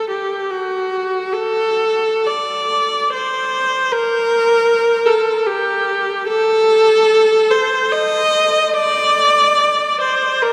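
A single bowed viola, clear and smooth with an even vibrato, sings a mournful, yearning line up front in this brief classical fragment cut from a longer piece. Played freely in 3/4 with expressive rubato, the solo voice moves between F#4 and Eb5 for its 10.5 seconds. A cathedral reverb with a long six-second tail surrounds the instrument, placing it in a vast, echoing space.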